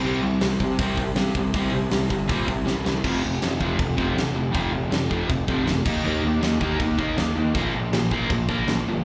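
Rebellious and energetic, this 9-second punk rock fragment, cut from a longer piece and caught live through a club PA with little reverb, drives at 160 BPM in a straight 4/4 as a double-tracked, overdriven guitar riff with slapback echo and a growly, fuzz-laden picked bass run from the start, joined at 0.4 seconds by a punchy, up-front acoustic kit whose drum fill at 2.7 seconds kicks the music from C5 into power chords on F5, Eb5 and Bb5.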